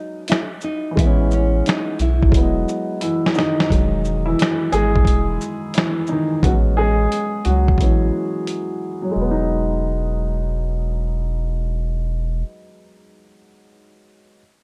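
A swung sixteenth-note feel drives this nostalgic, mellow lo-fi hip hop excerpt, where a gritty, compressed sampler-style kit of thumpy kick, snare, hi-hat, shaker and finger snaps, re-recorded in a small room, plays a fill before dropping out at 8.7 seconds, over a round, deep analog bass. A fingerpicked nylon-string guitar offers a brief, full-bodied melody through tape echo in the opening seconds, while a woody, low-passed upright piano accompanies on Emaj9 and Amaj9 chords, then takes a solo under a filter sweep from 3.7 seconds. Light reverb and a dark, warm production give the whole a mellow glow.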